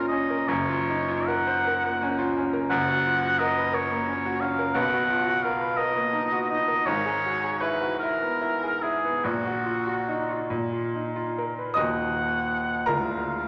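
A slow, rubato 6/8 pulse of 46-59 BPM carries this elegiac, yearning romantic classical excerpt in E-flat minor, where a warm oboe sings the melody with vibrato and a smooth top over a bright, brilliant, up-front baby grand piano accompaniment, moving from Gbmaj7 through Bmaj7 and E/G# toward E-flat minor as a new section begins at 11.8 seconds, all set in a wet recital hall reverb.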